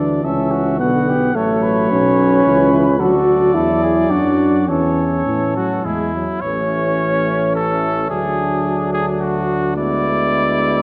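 Classical brass quintet in a stately triple metre, cut from a longer piece, with a clear cornet carrying the melody over a mellow, distant trumpet on the second line, both with light vibrato. A warm French horn with a vintage tinge and a smooth-topped, soft-attacked trombone fill in the accompaniment, while a roomy tuba anchors the bass, all five playing throughout. The sound sits in a wet concert hall and on worn, warbling old cassette tape with a warbly pitch drift, and the phrase moves into a new section at 6.4 s.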